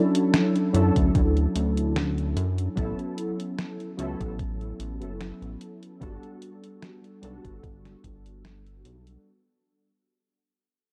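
A dry, gritty hardware recording with light reverb and a digital ambience opens this faded, dreamy vaporwave fragment, cut from a longer piece and fading out across its full length at a slow 74 BPM in 4/4 with a gentle sixteenth-note swing. Dark, detuned lo-fi synth keys warble through Dmaj9, A69 and Gmaj9, carrying ensemble chorus, 12-bit sampler grit and analog delay, while a detuned 8-bit drum machine ticks out hi-hat and a medium-tuned, tape-warm snare. A glossy chorused synth bass with a filter pluck arrives at 0.7 seconds, and a thumpy electronic kick joins at 1.0 seconds before dropping out at 8.2 seconds.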